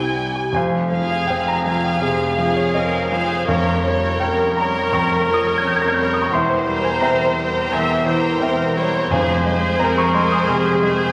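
A clear, up-front concert grand piano carries the melody over bowed strings and very quiet timpani from the first moment, opening this brooding, passionate romantic excerpt for piano and orchestra with an uneven, rubato pulse and the piano's action noise audible. Behind it, a background violin section adds a rich, expressive line, a focused second violin section and a smooth-topped viola accompaniment fill the middle, and an intense cello section and a close, even double bass section anchor the bass, all with vibrato. The timpani returns between 9.1 and 10.1 s as the harmony settles back to F minor, and the whole is bathed in a wet scoring-stage reverb with a layer of vinyl crackle.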